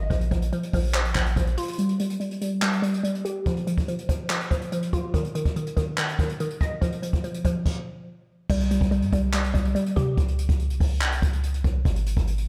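Eerie and brooding, this half-time trap excerpt at 143 BPM in C phrygian sets a glassy, crystalline wavetable pluck with chorus and a filter sweep from 1.8 to 8.5 seconds against a deep, clean 808-style bass that drops out after 1.6 seconds and returns at 8.5 seconds, while a distant, roomy jazz brush kit with a boomy kick, dark cymbals, hi-hat, handclaps and crash plays through a lush hall reverb, all pausing in a stop from 7.7 to 8.5 seconds.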